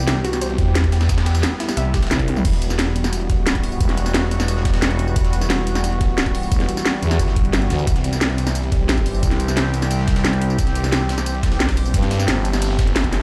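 Dark and mechanical, this excerpt of technical drum and bass opens on a drop where an evolving, bright pad with chorus and a swirling, phased, detuned saw bass both pump against the sidechain, while a soft, round pluck plays chorused, delayed arpeggios in the background until 2.2 seconds. From 2.1 seconds a growling FM bass sits up front beside the knocking electronic kick, the cracking snare and bright hats of the main kit, with tambourine, toms and crash, over a very quiet, gritty, overdriven breakbeat layer, and a drum fill lands at 2.3 seconds. The harmony moves from C to Emadd9 and back to C, a faint noise sweep enters at 12.2 seconds, and the whole plays out in a large, bare-room reverb.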